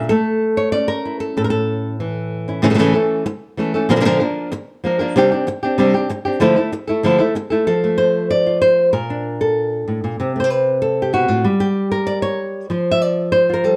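Flamenco guitar carries this intense, passionate excerpt from a longer piece on its own, fingerpicked and placed up front from the opening moment to its close at 13.8 seconds. The acoustic guitar has a warm tone, and small finger squeaks can be heard along the strings, adding a close, human texture. Its range reaches from low A2 up to E5, and the harmony opens on A before moving through Bb, Csus2 and Dmadd9. A fresh passage begins at 7.7 seconds on F, passing through Bb and a rich Am13, then a brief moment free of any chord before settling on a stark F5 power chord. A moderate stone-room reverb surrounds the playing, and the dark production gives the whole performance a shadowed, earthy weight.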